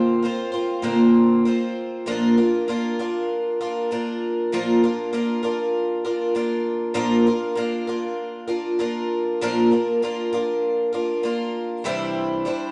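A picked twelve-string acoustic guitar plays alone and up front, its boxy, octave-doubled tone shimmering through a moderate stone-room reverb in this hopeful rock fragment at 98 BPM in a straight 4/4. The guitar moves from Bbadd9 to a long stretch on Bb, then lifts to Cadd9 at 11.9 seconds, ranging from Bb2 to C5. It has the feel of a live room take, with a softened top end.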